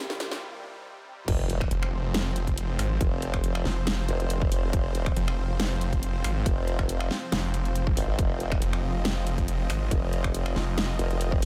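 Heavy wobble dubstep at 139 BPM in a half-time feel, chaotic and heavy, cut from a longer piece: a lush, bright supersaw pad pumping with sidechain and a very quiet, moody ambient pad open over a brief drum fill, a break and a faint riser before the drop hits at 1.3 seconds with an impact. There, a punchy, tape-warm electronic kick joins the dubstep kit's huge snare, crash, hi-hats and finger snaps, while an up-front formant-sweep wobble bass with chorus and overdrive is joined at 1.7 seconds by a snarling, growling saw bass, detuned and distorted. The mix is dry, with a high-pass filter on the whole.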